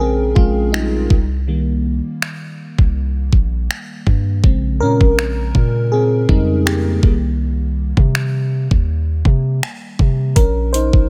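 A dry, close-sounding excerpt of moody, sensual contemporary R&B with a lightly swung feel. An FM electric piano layered with a soft pad carries the lead across the whole clip, its lush, dreamy, warbling vintage tone coloured by chorus as it moves between Bbm9 and Cm7 before settling on Bbmadd9 at 10.4 seconds. Beneath it, a deep, sine-like 808-style bass holds long decaying notes, and from 0.4 seconds an up-front electronic drum kit adds finger snaps, metallic hi-hats and a knocking kick.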